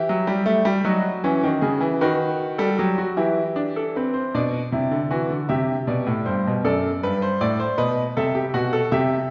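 A bright, brilliant baby grand piano plays alone, up front with long sustain, in this solemn, contemplative excerpt from a baroque-style three-part fugue in a straight 6/8, moving through Em, B7/D#, C, F#dim and B7 as a second section begins at 4.3 seconds, all bathed in the wet reverb of a church or concert hall.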